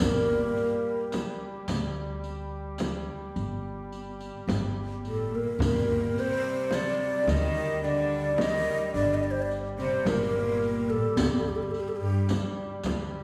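A breathy, hollow ney carries the longing melody up front in this hypnotic Arabic maqam ensemble piece in G minor, moving at 108 BPM in a straight 10/8 and cut from a longer work. Beneath it, a bowed cello section with a reedy gut-string tone plays a second line, a woody, thumpy pizzicato upright bass holds the low end, and a warm duduk sustains a drone on G3 with light vibrato and scooped notes. A deep, dry frame drum played with soft hands and a distant riq with dark jingles keep the pulse. The ney and cellos stop at 12.3 s, the percussion falls away at 13.1 s, and the bass and drone close at 13.2 s, all within the resonant air of a recital hall.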